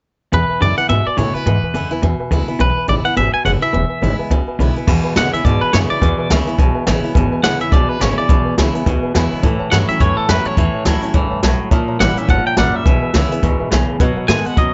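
A twangy, up-front electric guitar with tape echo carries the melody in this rollicking, upbeat rockabilly excerpt at 211 BPM with a swung feel in E mixolydian, over a second twangy electric guitar riff, a bright jumbo acoustic guitar, a mellow, slightly detuned upright piano in the background that slips in a fill at 11.1 seconds, and a woody, thumpy pizzicato upright bass, with a distant brushed drum kit joining at 4.9 seconds in a dry, rolled-off mix that moves from E7 through A7 and A#dim7 to B7.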